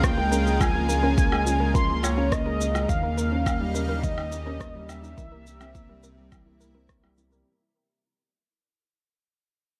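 Cinematic and intimate, this short piano and strings electronica clip sits in a drop that fades out across its length, with a felt-muted upright piano playing a boxy, mellow riff through tape echo, a velvety synth lead with vibrato and chorus carrying the melody, a lush detuned pad holding chords and a soft background pluck with tape echo tracing arpeggios, both pumping with sidechain, a round analog bass pumping beneath, and a deep electronic kick with rim click, shaker and woodblock re-recorded in a small room, under light reverb.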